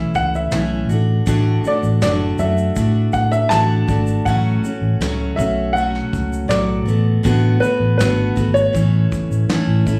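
A woody upright piano carries the melody from the opening moment, with a bright, full-bodied jumbo acoustic guitar picking the accompaniment up front in this easy-going, heartfelt acoustic pop excerpt in a straight 4/4. A dark, round, foam-muted vintage electric bass sits prominently underneath, and a soft brush kit with a punchy kick, medium-tuned snare and shaker plays in a small room. The chords move from A to D, F#m/A and Bm/A before returning to A, all under a light studio reverb.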